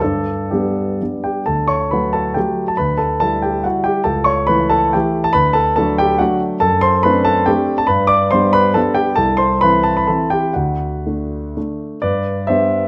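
A grand piano sits up front in a moderate recital-hall reverb, its tone warm and close while the room adds a gentle halo around each chord. This is a short excerpt from a longer classical piece, a romantic dance in triple time built on dotted rhythms, with a mood that feels both rustic and graceful. The solo piano carries everything from the first moment to its end at 12.9 seconds, ranging from deep bass notes down at C2 up to bright treble at D6. The playing moves with a flexible rubato, so the pulse stretches and gives in an expressive way. A brief opening phrase gives way to a longer second passage at 1.5 seconds, where the harmony moves through a series of colorful chord changes before settling home at the close.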